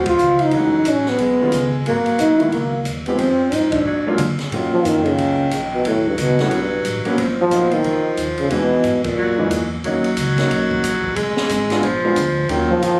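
Cool and moody, this short cut from a longer small-group swing and bop piece moves at a brisk 180 BPM in 4/4 with a light swing on the eighths, set in Eb minor. A breathy, mellow trombone carries the melody up front, its vibrato and scooped notes soaked in plate reverb, and it drops out near 9.7 seconds before returning briefly at the close. Beneath it a warm baritone saxophone plays a soft-attacked, subtoned second line that sits distant and roomy, while a clear baby grand piano supplies open, long-sustaining chords built on rich extensions and altered dominants. A woody, growly pizzicato upright bass thumps along on steel strings, and an acoustic drum kit with dark cymbals, a high-tuned snare and a boomy kick fills out the rhythm, with the band hitting accents together at 0.0, 3.7 and 9.0 seconds. Captured on a phone in the room, the sound carries a moderate club-like reverb that wraps the whole group in a live, intimate space.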